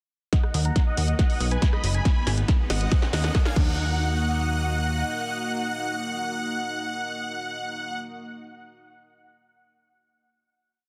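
Uplifting trance at 139 BPM in Eb minor, driving and bittersweet, this short piece opens at 0.3 seconds with a build over Ebm, B and Abm chords, where a punchy, up-front four-on-the-floor kick and a dry analog drum machine's fill of snare, rim, hats and crash push forward while a huge, detuned supersaw plays a repeating riff in thirds and sixths through a filter sweep, sidechain pumping and dub echo. A plucky, funky sawtooth bass with a fast attack pumps on the off-beats, a lush, chorused and phased pad of sustained chords enters at 0.7 seconds, and a very quiet riser adds transition texture. At 3.8 seconds the drums and riser have dropped away for the final hit, which rings on the synth layers in a light reverb and a dense, heavily limited master.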